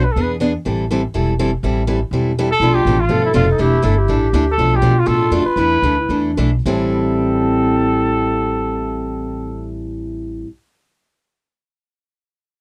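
A short clip of virtuosic, swinging acoustic string swing opens on boxy, picked steel-string guitar with audible finger squeak and thumpy, woody gut-string upright bass, with a brief trumpet note at the start. The trumpet returns at 2.5 seconds with scooped notes and light vibrato, joined almost at once by a raspy, growling clarinet on a second line, while the tempo slows between 4.6 and 6.7 seconds before settling on an Am7. The dry, close 1970s-style studio sound, with light reverb, keeps the guitar, bass and trumpet up front.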